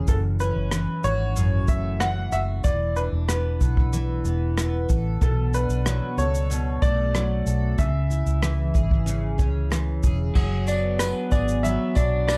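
A dark, warm production with light reverb frames this tender, reflective acoustic pop excerpt in F# minor, moving at 93 BPM in a straight 4/4. A full-bodied, double-tracked steel-string acoustic guitar with audible finger squeak carries the accompaniment over a round, foam-muted vintage electric bass sitting up front. A worn, woody, slightly detuned upright piano with long sustain and digital delay plays the melody, while a brushed jazz kit with a rolled-off top adds crash cymbal, punchy kick, rim click and shaker. At 10.4 seconds, as the harmony moves to G#dim/F#, a clean, compressed twelve-string electric guitar joins with arpeggios and a jingly tambourine enters in the background.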